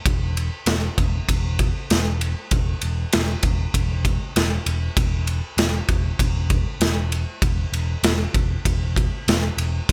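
A big acoustic rock drum kit sits up front, its punchy kick, medium-tuned snare and ride cymbal sounding in a studio room from 0.1 to 9.9 seconds of this heavy, menacing hard rock passage cut from a longer piece. Underneath, a picked electric bass growls through an amp with a bright edge, reaching down to a low E at a straight 98 BPM in 4/4. Light reverb gives the mix a touch of space.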